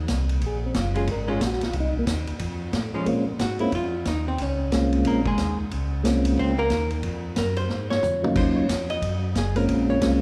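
Smoky and bluesy, this soul jazz organ trio swings at 181 BPM in Bb minor. A lightly overdriven tonewheel organ with key click and a stopped rotary speaker holds down the bass line up front, while a second, flute-like percussive organ voice with a slowly turning rotary speaker carries the melody over an acoustic vintage kit with a punchy kick and dark cymbals. The organ takes the solo spotlight until 3.1 seconds, when a clean, dark, picked hollow-body archtop guitar takes over, with a drum fill at 7.7 seconds, all bathed in the wet reverb of a recital hall in this fragment of a longer piece.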